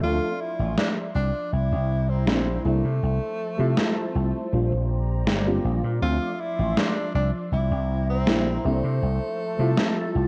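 Nostalgic and faded, this slow vaporwave excerpt at 80 BPM in F major sets a breathy, vibrato-laced tenor saxophone with tape echo over a round FM electric piano with ensemble chorus and analog delay, a lush detuned unison pad grainy with 12-bit sampler grit and phaser, a punchy up-front slap bass, and an electronic snare that enters at 0.8 seconds drenched in gated reverb, all within a dark, cassette-tinged production with a tape stop that circles through Dm9, C9, Fmaj7/C and Bb69.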